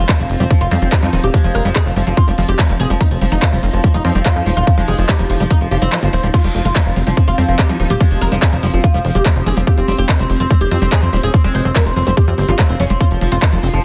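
Hypnotic and driving, this psychedelic trance excerpt rides a straight 4/4 pulse in a dense, heavily limited mix with little reverb. An up-front, tight electronic kick with overdrive anchors the groove, dropping out briefly at 5.9 seconds, while a layered dance kit adds crisp hi-hats, handclaps and crash cymbal. Underneath, a punchy, funky analog bass with a wave-folded, plucky filter snap sits forward, joined in the background by a squelchy, resonant acid bass riff carrying chorus and delay. A woody, plectrum-plucked oud carries the melody, its double strings treated with phaser, delay and sidechain pumping. Behind it, an evolving, detuned wavetable pad holds morphing sustained chords with chorus and its own reverb, while a metallic, aggressive FM wobble bass weaves a faint second line from 0.7 to 11.9 seconds through chorus, high-pass filtering and dub echo.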